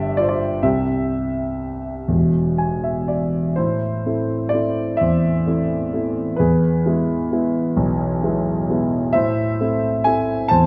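A dark, mellow grand piano sits up front with a slightly worn, boxy tone, playing a calm, lyrical classical solo in a slow, rubato 6/8 at roughly 40-44 BPM across a range from deep bass to the upper middle register. The opening moves through Dm11/G, C and E7, with a short piano fill from 2.1 s that leads into a settled A minor passage at 3.6 s, which rocks between Am and E. A moderate concert hall reverb gives the instrument a gentle, roomy tail in this fragment cut from a longer piece.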